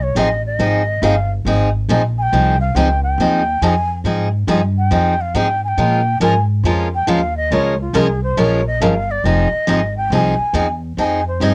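A home cassette recording with light reverb captures this swinging, virtuosic slice of jazz manouche in F minor at 139 BPM, cut from a longer piece. A breathy bamboo bansuri, bright with lifted highs and colored by cassette tape, carries a tongued, vibrato-laden solo from the start, while an up-front picked dreadnought acoustic guitar, full-bodied with fresh strings and its own tape tint, enters at 0.2 s as accompaniment. Beneath them a warm, woody pizzicato upright bass sits up front, moving through Fm7 to Bbm7 at 5.8 s and back to Fm7 at 9.2 s.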